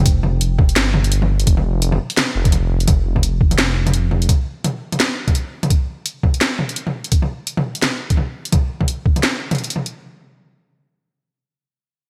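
Half-time drum and bass with a heavy, spacious mood, this excerpt opens on a deep, rumbling detuned sawtooth bass that holds low, beating notes with a fast attack until it stops at 4.3 seconds. A gritty, pitched-down sampler-style kick with tape-warm thump runs until 9.1 seconds, alongside a layered electronic kit of cracking snare, bright hats and toms re-recorded in a small room. All three parts sit up front in a light reverb and a bright 1980s-style digital production.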